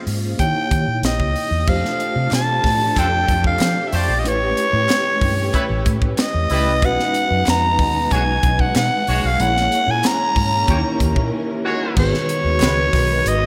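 Bittersweet and urban, this polished 1980s jazz-funk pop passage moves at 93 BPM in a straight 4/4, cut from a longer piece. A raspy, gritty soprano saxophone carries the melody up front over a mellow tine electric piano with ensemble chorus and slapback echo, a dark, foam-muted fingered electric bass, and a crisp fusion drum kit with a high-tuned snare and tight kick. A dark, lush string section enters at 1.7 seconds with sustained chords in the background, a barely audible group handclap joins at 2.3 seconds, and a vintage horn section adds a tight second line from 3.0 seconds, all bathed in a lush hall reverb that gives a big arena sound, with a brief break before the closing chord.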